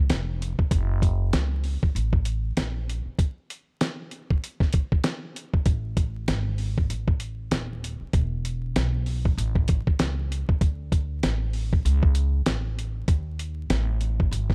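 A gritty, sampler-style drum kit sits up front with a thumpy kick, fat snare and hi-hat in this cool, smoky jazz-hop excerpt, swinging at 97 BPM in 4/4 with its tuning set to A4 = 436 Hz. Beside it, a woody, dark upright bass with gut strings is plucked low and close throughout, while a dusty bed of vinyl crackle and a dry room give the 14.5 seconds a hip hop grit.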